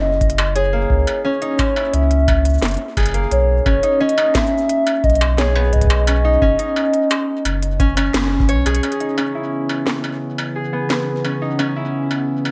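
A straight 4/4 pulse at 87 BPM is set by a dry, deep analog kick and an industrial kit of clanging snare, smooth hats, cabasa and struck metal, while a round sine sub bass sits up front under a fingerpicked, ringing concert harp playing filtered arpeggios with digital delay. This eerie, melancholic IDM fragment in C# minor is carried by a warbling, vintage lead of detuned square and sawtooth tones with chorus, vibrato and delay, moving over F# and B chords before a band accent at 8.1 seconds and a drum fill at 8.5 seconds. Once the lead has dropped out, a dark, lo-fi, wave-folded pad with a slow attack and long release enters over C#m7 at 9.2 seconds, all set in light digital ambience.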